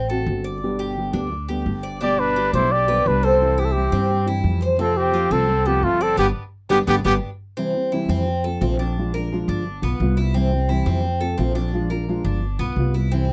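A sunny, danceable Latin excerpt opens with a metallic, double-strung Cuban tres picking arpeggios through a slapback echo, over a woody, growly pizzicato upright bass up front and a full-bodied, thumb-plucked nylon-string guitar, before a breathy, whispered trumpet carries the melody with vibrato from 2.0 to 7.1 seconds, shadowed by a bright second trumpet line in the background, and a band accent lands at 6.2 seconds in a dry, close 1970s-style studio sound touched by light reverb.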